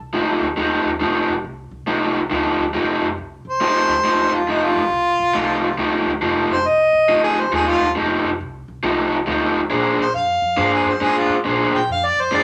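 A woody, thumpy upright bass sits low beneath this gritty, rollicking electric blues shuffle fragment, with a raw, lo-fi overdriven garage guitar riff up front from the first moment, before a mellow harmonica with light vibrato enters at 3.5 s for a jazz-style solo that sounds distant and roomy, the swinging groove moving from F9 to Bb9 at 9.7 s inside a moderate club reverb.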